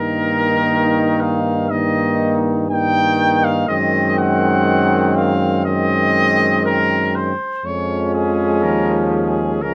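This noble, stately passage for classical brass quintet unfolds at an unhurried pace in a straight four, and it is cut from a longer piece. Up front, the lead trumpet carries the melody with light vibrato and a roomy, slightly distant quality, while a second, mellow trumpet traces a soft-edged line beneath it. A bright trombone and a smooth-topped French horn fill in the middle harmonies, and the warm bass trombone anchors the low end. All five players sound for the full 9.7 seconds, and each of the upper four adds a touch of vibrato. The harmony moves from Eb/G to Ab7/Gb at 3.7 seconds and settles on Db/F at 7.6 seconds, captured by close, detailed microphones with little reverb.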